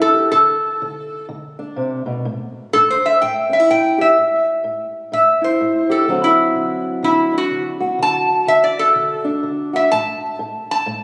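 From the first moment, a metal-body resonator guitar played with a steel slide carries the melody up front, its bright, nasal, metallic voice ringing over a fingerpicked old ladder-braced acoustic guitar. This short cut from a longer acoustic country blues piece moves at 125 BPM in 4/4 with a swung eighth-note feel, and its mood is rollicking and soulful. The resonator, picked with fingerpicks, holds the spotlight for the full 11 seconds, while the ladder-braced guitar sits lower in the mix with a dark, boxy tone. The harmony moves from D5 to A5, touches D7 at 6.1 seconds, and returns to A5 near the close. The sound was captured on a phone in the room, with moderate concert hall reverb, then given studio reverb and compression, and the instruments are tuned slightly below standard pitch at A4 = 439 Hz.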